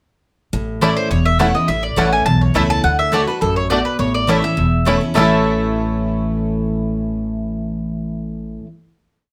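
A straight 4/4 pulse at 208 BPM drives this short, joyful and virtuosic bluegrass piece in A major: an up-front mandolin plays a fiddle tune in running eighth notes, a second, woody mandolin chops on the off-beats, a full-bodied jumbo guitar alternates bass and strum with bass runs, a growly pizzicato upright bass plays two-beat root and fifth with walk-ups, and a twangy fingerpicked banjo rolls and vamps through tape echo, all in a lightly reverberant room, moving from A to D at 2.8 seconds and back before settling on a final chord at 5.2 seconds.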